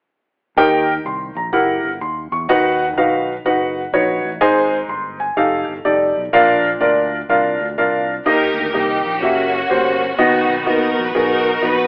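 Reverent yet jubilant, this short stretch of uptempo gospel is cut from a longer piece and moves at 125 BPM in 4/4 with a swung eighth-note feel. A concert grand piano carries the accompaniment from 0.6 seconds, its intimate, natural tone sitting up front with deep bass and audible action noise. Beneath it, a fingered electric bass adds a punchy, direct and amped low end, though it sits well back in the balance. At 8.3 seconds a rich studio string section takes up the melody, its bowed ensemble sound lush, smooth and even with vibrato, placed up front beside the piano. The harmony cycles through Eb, Gb7b9 and B, then moves through Ab, F9 and Bb before returning to the opening chords as the strings enter. The band plays live in one room, bathed in a stone room reverb, yet the whole recording is filtered to a narrow telephone sound.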